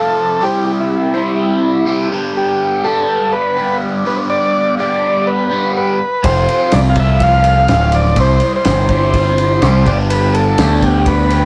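A straight 4/4 pulse at 124 BPM drives this dark, mysterious psychedelic rock fragment, where a reedy, overdriven vintage combo organ with light vibrato carries the melody over a double-tracked, phaser-treated electric guitar riff moving through C, G and F. At 6.2 s a growling, overdriven picked bass and a cloth-damped, thuddy drum kit with a fat snare, tight kick and dark ride cymbal join in. The rough rehearsal-room sound has warm saturation and a small room's moderate reverb, and the excerpt is cut from a longer piece, ending at 11.4 s.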